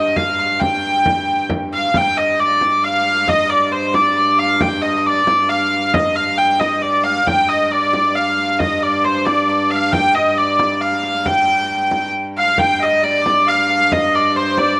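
A rich, nasal hurdy-gurdy carries the melody up front in this ancient, mysterious medieval dance at 135 BPM in 3/4, over a ringing gut-string drone on G2 from a viola da gamba and a deep, close and dry frame drum played with soft hands that enters at 0.2 seconds. At 12.4 seconds a bright, airy tenor recorder with vibrato joins in the background on a second line, sharing the melody's register. A moderate echo chamber reverb adds space to this fragment cut from a longer piece.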